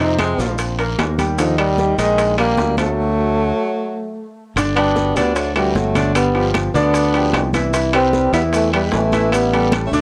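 Afro-Cuban jazz at 151 BPM, sunny and danceable, opens with a breathy, dark trombone carrying the melody through analog delay, its scooped notes and vibrato joined by a clear tenor saxophone on a second line, over sustaining concert grand piano and a punchy, growly fingered electric bass up front. From 0.2 s a percussion bed of ringing metal-shell timbales, thick-skinned congas, tight bongos, woody claves and, further back, raspy guiro and grainy maracas fills in the groove. After a stop from 3.0 to 4.6 s the music settles into G major, all of it heard through a small room and the warbly pitch drift of worn cassette tape, in this fragment cut from a longer piece.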